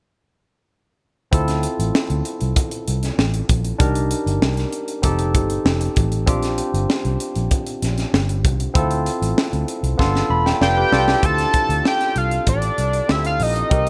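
Urban and bittersweet, this polished 1980s jazz-funk pop fragment, cut from a longer piece, moves in a straight 4/4 groove that starts at 1.3 seconds. A barky tine electric piano carries the accompaniment through a combo amp, lightly overdriven with a subtle chorus and a bright bite. Beneath it, a vintage muted fingered electric bass sits dark, round and foam-muted, while a crisp fusion drum kit gives punch with a high-tuned snare and a pumping small-room sound. Drums and electric piano both play fills from 10.0 seconds, leading into a new section at 11.2 seconds. A fat analog lead enters just before it, at 10.6 seconds: a detuned sawtooth-and-square tone with a sub octave, ring modulation, filter sweep, vibrato and chorus that stays mellow and sustained. The chords move from Dm7 through Cm7, F7 and Bb69 to G7, under light studio reverb and bright digital 1980s-style production that keeps every part up front.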